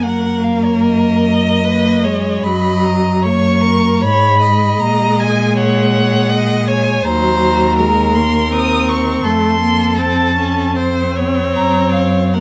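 An up-front cello anchors this elegiac string quartet movement, its smooth, even bowed tone and vibrato carrying the bass line from Eb2 to Bb2. Above it, a woody, distant first violin sings the melancholic melody high in its range, while a second violin adds a clear, focused inner line with its own vibrato. The viola fills out the accompaniment with an expressive voice, sliding between notes with portamento. The slow romantic movement is in Eb minor and 3/4, moving at 73-83 BPM with a rubato feel. The harmony passes from Ebm/Gb through Gb/Bb, Cm7b5/Eb and F before reaching Gb at 11.6 seconds. All four players sound together throughout this 12.4-second fragment of a longer piece, set in a moderate large-studio reverb.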